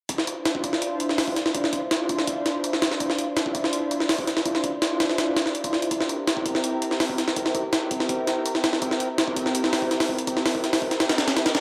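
This drum and bass cut has a jungle flavour: a dark, nostalgic fragment taken from a longer piece, moving in a straight four-four feel. A sampler-style jungle drum kit sits up front, compressed and pitched up, with a thumpy kick, a high-tuned snare and hi-hats. The kit carries the character of being re-recorded in a large room, with high-pass filtering on the hats, kick, snare and room sound. Behind it, a lush unison pad holds sustained chords, thick and warbling with a vintage, detuned blend of sawtooth and square waves, a slow attack, a long release and chorus. The harmony moves from Dm9 to C7 at 5.9 seconds, and the kick drops out at 11.0 seconds. The whole recording has a dry, gritty hardware quality set inside a moderate echo-chamber reverb.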